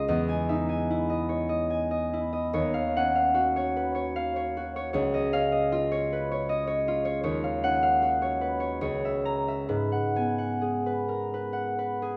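A mellow, ringing concert harp carries this short classical solo, heard up front in a wet recital hall whose reverb lets each fingerpicked note linger. Cut from a longer piece, the passage moves in a gentle, mysterious 3/4 with a rubato feel, the tempo drifting between 63 and 80 BPM. It sits in G# dorian, tuned to A4 = 441 Hz, and the harp spans a range from C#2 up to A#5. Lush extended chords color the harmony, opening on Emaj7 and moving through D#m9, C#9 and C#m6 before settling on G#m9 at 9.7 seconds. The harp plays alone throughout, from its first note until the fragment ends at 12.2 seconds.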